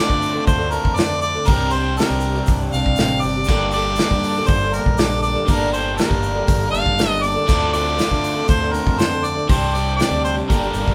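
Folk rock with a heartland rock lean, this short excerpt sits in G minor at 120 BPM in a straight 4/4, carrying a reflective, dusty mood. A mellow harmonica leads the melody up front, its scooped notes and light vibrato lending a vintage, pop-styled solo voice. Beneath it, a picked twelve-string acoustic guitar shimmers with boxy, octave-doubled picking as accompaniment, while a crunchy, double-tracked overdriven electric guitar works a riff. A round, punchy fingered electric bass and an acoustic drum kit played with bundle sticks, with dark cymbals, a medium-tuned snare and a punchy kick, join almost at once, and a grainy, very quiet tube shaker adds texture from 0.2 seconds. The harmony moves from Dm7 through Csus2 to a long Gmadd9 before returning to Dm7 and Csus2, all captured as a band playing live in one room with a short, wet reverb.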